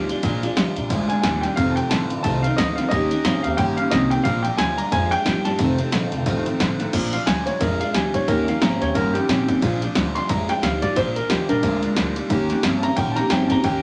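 Rockabilly at a rowdy, upbeat 179 BPM with a swung 4/4 feel in Bb mixolydian, built on a picked, full-bodied steel-string acoustic guitar, a twangy, slightly broken-up electric guitar riff through a small old amp with phaser, thumpy gut-string upright bass, and a punchy, tape-warm analog drum machine with crash, ride, kick and snare up front, while a polished upright piano carries the melody from 1.1 seconds and takes a solo from 6.9 seconds over Bb7 and Eb7 changes, with a break at 12.1 seconds, all in moderate studio reverb in a short cut from a longer piece.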